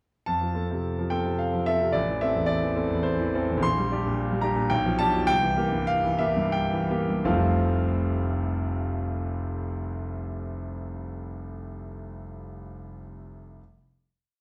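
A bright concert grand piano carries this short romantic character piece alone, sounding from 0.3 to 13.6 seconds in F major and 3/4 time. Its single-line melody sits up front over inner broken chords, with a brilliant, open tone, deep bass and long sustain across a range from F1 to C6. The tempo moves freely between 78 and 116 BPM with rubato, and the playing slows from 2.8 to 7.3 seconds as the harmony travels from F through A minor and G minor toward a C7 chord. A final F chord arrives at 7.3 seconds and rings on to close the whole piece. The mood is warm and lyrical, set in a wet recital hall with a dark, warm production that lets the piano's resonance bloom.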